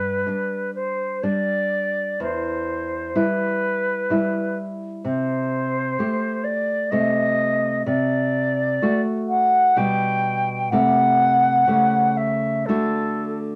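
A silver concert flute carries the melody in this serene, warm romantic duo, its pure, metallic tone shaded with vibrato and tongued notes, sitting up front yet with a slightly distant quality. Beneath it, a nylon-string classical guitar supplies fingerpicked accompaniment, dark in colour, with the odd finger squeak audible. The music moves in a rubato 3/4 at about 63 BPM in G major, drifting from G through Em and Am7/C before gathering toward D by the close. A wet studio reverb with a short decay wraps the two instruments in a gentle sense of space. The flute falls away at 13.4 seconds and the guitar at 13.6 seconds, as this brief passage, taken from a longer piece, comes to rest.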